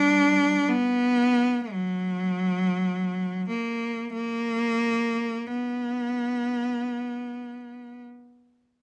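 A single bowed cello sings a mournful, yearning line in this brief classical fragment, its clear, smooth tone shaded with vibrato and set up front by close, detailed microphones. Played in free time by one player, the even, expressive phrasing stays in the instrument's middle register and ends at 8.0 seconds, with a light reverb lending a touch of space before the cut from the longer piece.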